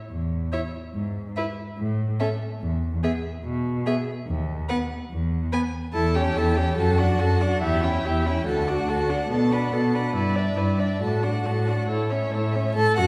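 The quartet sits in a wet scoring-stage reverb with a 1.7-second decay, heard from further back in the room, which gives this cheerful, spirited classical-period movement a spacious glow. At 143 BPM in a straight 4/4, the music settles into D major from 6.0 seconds, tuned to A4 = 436 Hz. The cello enters first at 0.1 seconds, up front and bowed with vibrato, laying a smooth, even bass line low in the range. At 0.5 seconds, the remaining strings join: a focused first violin carries the melody high above, a distant-sounding second violin traces an inner line, and the viola fills in steady, rich accompaniment. After its opening, the harmony moves briskly through a cadential chain from A7/E through D, Bm7 and Em7/G before landing on A, and this brief cut from a longer piece breaks off at 13.1 seconds.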